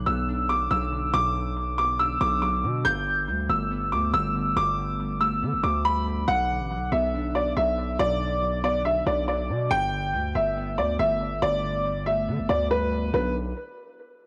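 This home cassette recording has a light reverb and a studio ambience, framing a dark, tense drill-style hip hop passage cut from a longer piece. It moves at 140 BPM in 4/4 with a half-time feel, in B minor, with the harmony shifting between Bm and Gadd9. A clear, woody upright piano carries the melody up front with an open tone, ranging from B4 to G6. Beneath it, glassy digital keys supply the accompaniment: detuned and sine-like, treated with chorus and a filter sweep, each note striking fast and then fading. A punchy, heavy 808-style bass with a noise layer hits hard up front, its notes decaying after each attack, and it carries on until 13.5 seconds, just after the piano and keys stop at 13.3 seconds.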